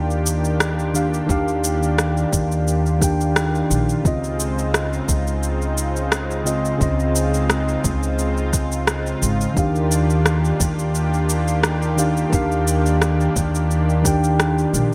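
Sunny and blissful, this sunset chillout excerpt moves at 87 BPM in 4/4 with a gentle 16th-note swing, drifting between Ebmaj9 and Dbmaj9 before returning to Ebmaj9 at 9.6 seconds. A mellow tine electric piano carries the accompaniment with a clean, direct tone, softened by a low-pass filter and trailed by digital delay. Beneath it, a lush unison pad holds sustained chords, its thick, detuned sawtooth and square-wave layers given an airy noise edge and a soft attack, shimmering through chorus. An upright bass plays pizzicato with a woody, steel-string sound, while overdriven electronic shaker and rim click enter at 0.1 seconds, joined by a soft, overdriven electronic kick drum from 1.3 seconds, both set in studio reverb. A moderate plate reverb and bright 1980s-style digital production give the piece a glossy, spacious sheen.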